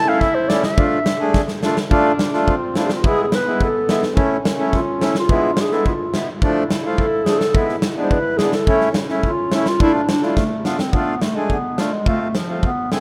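A straight 2/4 pulse drives this festive yet soulful klezmer excerpt, cut from a longer piece. A mellow clarinet with a soft attack carries the melody in a classical manner, while a French horn with a smooth top plays a second line in the background until 10.6 seconds. A reedy, boxy accordion sits up front with the accompaniment. A big acoustic rock drum kit, also up front, adds a punchy kick and a medium-tuned snare in a pumping room, with fills at 1.3 and 10.4 seconds. The chords move mostly among Dm, E and A before closing on F, all bathed in a lush hall reverb within a rough home-demo mix.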